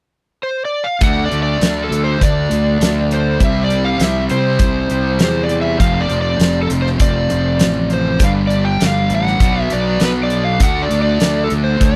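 A dry, close 1970s-style studio sound frames this driving, raunchy blues rock and southern rock power-trio cut at 100 BPM in a straight 4/4, where an overdriven slide guitar played with fingerpicks and treated with slapback echo opens alone at 0.4 seconds before, at 1.0 seconds, a bright double-tracked fuzz guitar riff, a growly fuzz fingered electric bass, a huge big-room arena drum kit with a fat snare and punchy kick, and a very quiet, gritty tonewheel organ with chorus vibrato holding sustained chords all crash in over a D, C, F, G, Bm and D progression.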